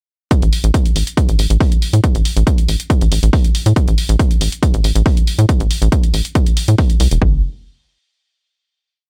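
Driving peak-time techno in A minor at 139 BPM, this short, complete piece has an industrial, hypnotic mood and a straight 4/4 feel. An overdriven, layered kick sits up front, hammering out a heavy four-on-the-floor pulse from 0.3 seconds. Programmed electronic hi-hats, closed and open with an analog, tape-warm colour, carry the backbeat lower in the mix, their level pumping with sidechain compression. A tight sequencer bass, built from sawtooth and square waves with a punchy filter pluck and fast attack, rolls through a staccato groove between E1 and A2, also pumping and placed up front. The dry groove runs until 7.2 seconds, when the piece closes on a final chord that rings to the end.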